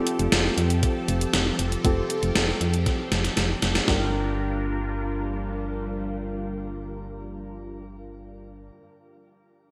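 Nocturnal and melancholic, this short synth-pop fragment moves at 118 BPM in a straight 4/4, set in G minor and tuned to A4 = 435 Hz. A dark, mellow baby grand piano plays accompaniment with long sustain, dressed in lush chorus, a low-pass filter and shimmer reverb. With it, a string machine holds full-ensemble chords that sound vintage, sawtooth-edged and soft in attack with a sub octave and long release, treated with phaser, ensemble chorus, a low-pass filter and shimmer. A punchy, round FM bass sits up front with a fast, decaying attack, alongside a gated 80s digital drum machine whose thumpy kick and gated-reverb snare drive the groove until a drum fill at 2.9 s leads to the drums stopping at 4.0 s. A filter sweep colours the opening as the harmony moves from Fadd9 to Gm7 at 3.9 s, all within a bright 1980s-style digital production and a moderate hall reverb.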